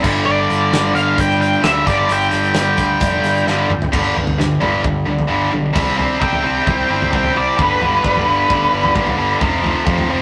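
A bright, double-tracked distorted guitar sits up front, driving a tight riff through this cathartic, anthemic stretch of quiet-loud alternative rock at 131 BPM in 4/4, cut from a longer piece in G mixolydian. Beneath it, a fuzzy, overdriven picked electric bass adds a warm low end, while a loose indie drum kit with dark cymbals, a punchy kick and a medium-tuned snare sounds rolled-off and mid-forward, tossing in a fill at 3.5 seconds. A dark octave-fuzz lead guitar carries the melody in high, distorted phrases colored by analog delay, and it takes the solo spot from 5.8 seconds. At 3.9 seconds an electric guitar through a small old amp enters in the background with twangy, slightly broken-up arpeggios. The harmony moves from G5 to G, then C, Gadd9 and F, all captured as a rough rehearsal-room recording with tube saturation and a stone-room reverb.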